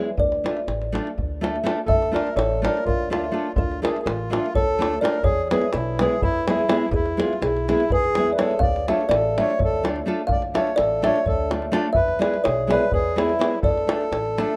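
Balkan folk in the manner of a wedding band, this fiery, restless piece drives along at 250 BPM in a straight 7/8, rooted in D Hungarian minor and cut from a longer performance. A woody, mellow kalimba carries the melody from the start with short, soft fingertip plucks, while an up-front nylon-string guitar fingerpicks a deep classical accompaniment beneath it. A thumpy pizzicato upright bass and a deep davul join at 0.2 seconds, and a reedy single-reed accordion with dry tuning enters at 1.9 seconds to add a clear second line. The harmony moves between D minor and E, settling back on D minor near the close. Light reverb and small room ambience give the whole a rough home-demo feel.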